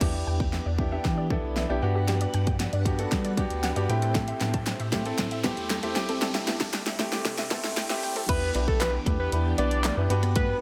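Dance-pop with a confident, driving feel, this excerpt builds for its first 8.3 seconds over punchy, up-front drums, with a round analog bass and a clear baby grand piano both pumping with sidechain, while a swirling, phased string machine holds sustained chords and a lush unison pluck spins arpeggios with tape echo in the background. A background riser enters at 2.6 seconds, and a clean, compressed electric guitar riff and crisp group handclaps join at around 4.2 and 4.4 seconds, as the chords move through Em7, Gmaj7, Am7 and C6 under a drum fill and filter sweep. At the drop at 8.3 seconds, a fat, warbling analog lead with chorus, vibrato and tape echo takes the melody, all set in light digital ambience.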